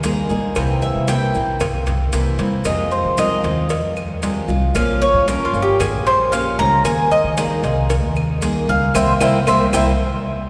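Nostalgic yet danceable, this short cut from a longer Cuban son and guajira piece moves at 114 BPM in a straight 4/4, set in a church-like hall with a long, wet cathedral reverb. Up front, a bright, metallic Cuban tres with double strings, some doubled at the octave, takes a solo of picked arpeggios from 0.6 seconds. Beneath it, a dark, thumpy pizzicato upright bass anchors the groove, while an old ladder-braced acoustic guitar with aged strings gives boxy, picked accompaniment. In the background, compressed, saturated congas played with hard hands sit beside a round, low-tuned cowbell, grainy, mellow maracas and woody claves. The harmony cycles through Ebsus4, C7, Fm7 and Bbm before the band lands an accent together at 8.9 seconds.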